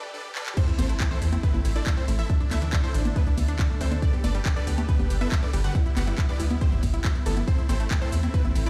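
Emotional and driving, this uplifting trance passage is cut from a longer piece and opens on a brief break where huge, airy supersaw chords hang over a rootless Em before a drum fill at 0.4 seconds brings in a house kit of congas, crash, handclaps, shaker and warm hats in studio reverb. The drop lands at 0.6 seconds with a very quiet electronic sub drop and a punchy, layered kick sitting up front. A tight, saturated sequencer bass with a filter-pluck sawtooth and square-wave tone and a touch of ring modulation drives underneath. The detuned supersaw melody carries the lead with sidechain pumping and digital delay, while a punchy unison pluck adds a second line with a filter sweep, and a tight sequenced synth spins arpeggios in the background. A thick, warbling vintage pad with a slow attack and chorus holds the chords from Am through Gadd9 and Em/G back to Am. The whole mix sounds as if played on a big sound system in a bare stone room, giving it a cavernous, echoing ambience.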